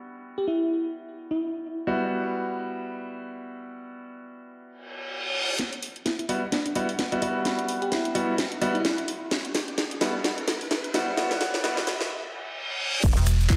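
Swung sixteenths at 129 BPM drive this aggressive, bouncy bass house excerpt in E minor, where brilliant, up-front grand piano stabs on an Emadd9 chord pump with sidechain, filtering and delay, a sparkling, bell-like FM electric piano adds chorused, phased melody fragments, and electronic reverse cymbal, riser and downlifter effects arrive at 4.9 seconds before a garage kit with cracking snare, handclaps, finger snaps and bright hats enters at 5.6 seconds for a filter-swept build-up in a dreamy, reverb-soaked mix, until a break gives way at 13.0 seconds to a punchy, tape-warm kick, a grainy egg shaker and a nasal vowel-sweep wobble bass, followed moments later by a metallic, overdriven FM bass.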